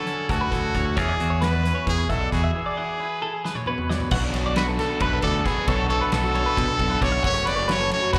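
A brilliant, up-front trumpet carries the melody from the first moment, its vibrato ringing with a slapback echo over a clean, compressed twelve-string electric guitar playing arpeggios and a twangy, fingered electric guitar in accompaniment. This short excerpt is math rock and midwest emo in 7/8 at 268 BPM counted in eighths, intricate and wistful, moving from A to E13 before a break at 2.5 seconds and a drum fill that closes the first half. The loose indie drum kit sounds distant and roomy, with dark cymbals, a fat snare and a punchy kick under a rolled-off top, while a bright, direct picked electric bass sits up front. At 4.1 seconds the twangy guitar drops out and a biting, overdriven, double-tracked guitar takes up a riff as the harmony shifts to Bm9 and then F#m. The whole band is heard as a live gig through a club PA, wrapped in light reverb.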